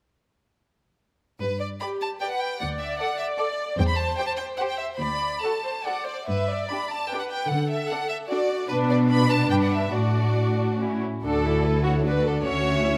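Lilting in three with a flexible, rubato pulse, this quick, cheerful classical-period passage for string orchestra is cut from a longer movement and carries a spirited lift. Up-front violins sing the expressive melody with vibrato, while a second violin line and focused violas fill the middle with smooth, even bowing over a lush, close cello bass. Double basses join at 11.2 s to deepen the low end, and the whole ensemble sits in the moderate bloom of a scoring stage.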